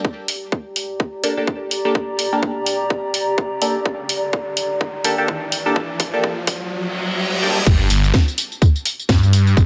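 Bass house at 126 BPM in G minor with a swung 16th feel, this bouncy, gritty excerpt builds over a tight electronic kick, a garage kit of cracking snare, bright hats, tambourine and crash, a warbling lo-fi pad with chorus and sidechain pumping, a nasal band-passed chord stab with phaser and tape echo, and a swell, riser and reverse cymbal, before the drop at 7.7 seconds brings in a thick, saturated, phased detuned saw bass up front.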